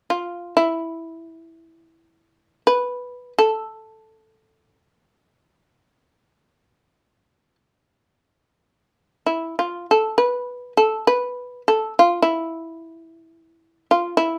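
A solo shamisen, bright and buzzing with a percussive plectrum attack, sits up front from 0.1 to 14.4 seconds, its fretless lines moving within a compact middle register between E4 and B4. This fragment of Japanese traditional chamber music unfolds in free time with a still, meditative mood, set in a light reverb. A second section begins at 9.8 seconds and carries the solo voice through to the close.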